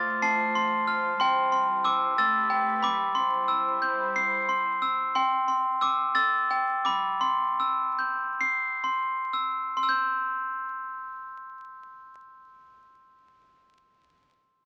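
In a rubato 6/8 lilt of 38-62 BPM in dotted quarters, this sleepy, innocent lullaby in C major moves through F, C/G and Gadd9 harmonies and slows between 5.1 and 9.8 seconds. A sparkling, bell-like glockenspiel struck with brass mallets carries the melody close and up front, while a dark, nasal chamber string section in period gut-string style holds bowed, reedy chords beneath it until 5.1 seconds, leaving the glockenspiel alone for the rest. A small room's moderate reverb and the crackle of a very old 78 rpm record frame this brief fragment of a longer piece.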